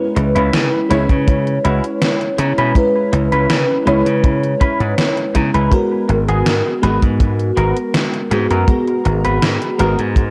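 A lush, dreamy FM electric piano with a soft pad layer opens this woozy, melancholic vaporwave fragment, its mellow, full-bodied chords sitting up front and shimmering through analog chorus and tape echo. Almost at once a punchy, direct slap bass joins, along with a twangy, compressed clean electric guitar riff that is also coloured by chorus and tape echo. A gated 80s digital drum machine supplies hi-hat and snare in a sampler-style, overdriven voice, with gated reverb on the snare and tape echo trailing behind. From 1.1 seconds a dry, tight acoustic kick drum lands up front in a straight 4/4. The harmony moves from C#m7 to G#m9 at 5.7 seconds, and the whole mix is bathed in moderate spring reverb and a hazy, echo-heavy cassette-tape sound.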